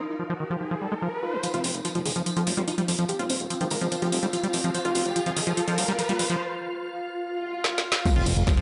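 Hypnotic and alien, this psychedelic trance passage, cut from a longer piece, opens on a swarming, tense drone of detuned, granular sine voices holding an Ebsus2 chord in the background, with a very quiet, wobbling formant-sweep bass and an electronic riser beside it. At 1.4 seconds the harmony shifts to F5 and the build-up begins, bringing in a punchy supersaw stab melody with a phaser and dub echo, a jingly acoustic tambourine in the background, and an up-front garage kit with a woody snare, metallic hats and crash cymbal, overdriven in a small room, while a fat, wave-folded analog bass follows a moment later. From 0.2 seconds onward, a squelchy, resonant liquid acid bass riff with chorus and dub echo sits up front, its filter sweeping through the build, while the drone, acid bass and stab pump against the sidechain. A break arrives at 6.4 seconds, a swell and a drum fill gather tension, and at 8.1 seconds an overdriven, knocking electronic kick lands with the impact. 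The sound sits in a moderate digital room and stays dark at the very top.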